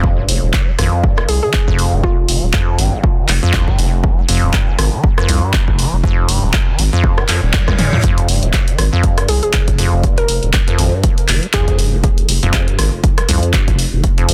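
A swung sixteenth-note groove in 4/4 drives this hypnotic, trippy acid house fragment, anchored by a punchy, tape-warm electronic kick and an analog drum machine of handclaps, hi-hat, rim click and toms, both re-recorded in a small room. Up front sits a squelchy, resonant square-wave acid bass riff, roughened by tube saturation, subtle chorus, delay and sidechain pumping, while a deep, thick sine sub bass, also saturated and pumping, fills the low end beneath it. A hollow, bouncy square pluck carries the melody in brief appearances, with a detuned, mellow character shaded by chorus, cassette tape coloring and tape echo, returning at 9.3 seconds. Around 7.3 seconds an electronic reverse cymbal rises into a short drum fill. The sound is dry, dense and heavily limited in a modern master.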